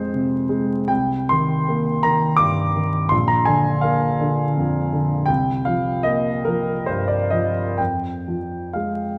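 A warm grand piano, present and up front with long sustain, carries this short, nocturnal, hazy fragment of impressionist solo piano, spanning Bb1 to D6 in a rubato 3/4 that drifts between 62 and 87 BPM. The harmony moves from Fm through Cm9, Bb and C7sus4 before settling back on Fm at 7.8 seconds. A wet recital hall reverb and a layer of vinyl crackle wrap the playing, which is cut from a longer piece.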